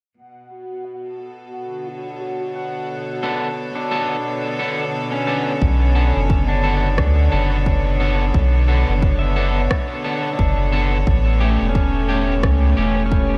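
A spacious, deep ambient dub excerpt in B minor at 88 BPM with a swung sixteenth feel, set in light digital ambience, where a bright, earthy chamber string section fades in on sustained chords from 0.2 seconds alongside a bubbling, resonant sawtooth texture of random filter steps washed in chorus and reverb. A slightly broken-up, twangy electric guitar adds stabs through dub echo, while a clean pedal steel guitar with fingerpicks, volume swells and slide plays arpeggios through tape echo in the background. At 5.6 seconds a round, up-front sub bass and an overdriven, layered electronic kick re-recorded in a large room arrive, later joined by a very quiet rim click, as the harmony moves from Bm7 to A7.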